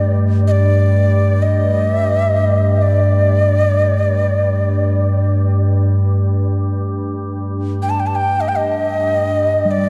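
Moving in free time with a meditative, unmeasured flow, this short excerpt of world meditation music feels spacious and haunting. A breathy, woody cedar flute in the Native American style carries the melody throughout, up front with vibrato, a crisp chiffing attack and lifted highs, its line trailed by a delay. Beneath it, an organ-like drone holds a low G2 for the full 9.9 seconds: a calm, sustained tone of detuned sine and triangle layers with ring modulation, a slow attack, a long release, ensemble chorus and its own reverb. A soft bronze singing bowl, struck with a felt mallet, rings quietly in the background until 3.1 seconds and returns at 9.7 seconds, its mellow metallic tone showing slow beating and a boxy small-room character. The whole piece sits in a vast, echoing cathedral reverb with a long 4.9-second decay.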